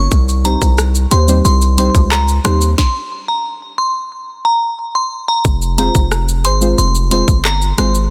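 Dry, dense and heavily limited, this short dancehall cut in F minor moves at 90 BPM with a sultry, tough mood. A punchy, heavy 808-style bass and a tight electronic drum kit with sharp snare, metallic hats, handclaps, rim click and shaker sit up front. Very quiet acoustic maracas join only until 2.8 seconds. A deep, dark chord stab with chorus and a filter sweep supports a glassy, warbling FM bell melody treated with chorus, phaser and delay. The music stops from 2.8 to 5.4 seconds before returning on an F minor chord.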